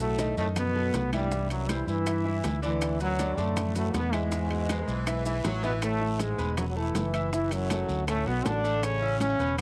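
A brilliant, tight trombone section leads this joyful, sunny salsa excerpt up front, backed by a bright concert grand piano, a dark, punchy fingered electric bass, and a bed of round bongos, thick-skinned congas, ringing timbales, raspy guiro and grainy maracas, while an edgy saxophone section with vibrato adds a brief second line from 4.4 to 5.8 seconds, all in light reverb.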